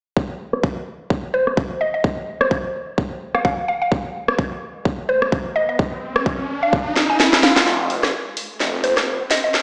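Bass house with a gritty, swaggering feel, this excerpt sets a tight, up-front electronic kick and a garage kit of hi-hats, rim clicks and a cracking snare, all under a filter sweep, beneath a woody, warbling FM mallet pluck with chorus and tape echo, while a riser enters at 4.9 seconds, the kick drops out at 7.2 seconds, and a drum fill starting at 7.0 seconds carries on into a build-up at 7.7 seconds, where a thick, swirling detuned saw bass with phaser, tube saturation and sidechain pumping arrives, the whole heard through a lush hall reverb as if played on a big sound system in a bare stone room through a small speaker.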